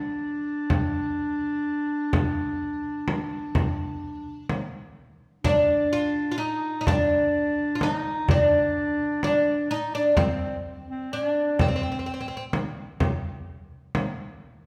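In a straight 10/8 at 127 BPM counted in eighths, this soulful, hypnotic excerpt of Arabic maqam ensemble music pairs a woody, fretless, plectrum-plucked oud carrying the melody with a soft-attacked, roomy clarinet second line, joined at 0.7 s by a deep, large frame drum played with soft hands; the music settles into D maqam kurd from 5.4 s, and the oud and clarinet fall away before the drum closes at 14.2 s, the band playing live in one room and bathed in a wet, large studio reverb.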